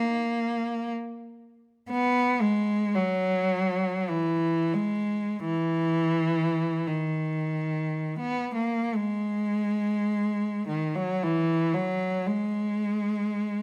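Classical and meditative, this brief portion of a longer piece features a single unaccompanied cello in G# minor, moving freely in 3/4 with expressive rubato between 34 and 62 BPM. The bowed cello sounds rich, smooth and even, its vibrato heard up front through close, detailed microphones while staying within a low register from D#3 to B3. A moderate recital hall reverb surrounds the lonely line, and the opening phrase returns at 9.6 seconds before the passage ends at 13.6 seconds.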